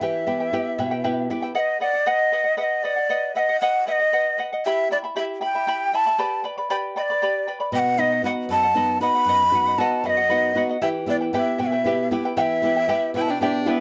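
Andean folk in a festive, earthy 6/8 at 78 BPM, with a breathy, woody large quena carrying the melody up front over shimmering, double-strung charango, while a bright flamenco guitar with audible finger squeak plays briefly at the start and returns at 7.7 seconds, and a clear, distant-toned violin slips in a short second line at 13.2 seconds before this excerpt cuts off, all captured by close, detailed microphones in light reverb.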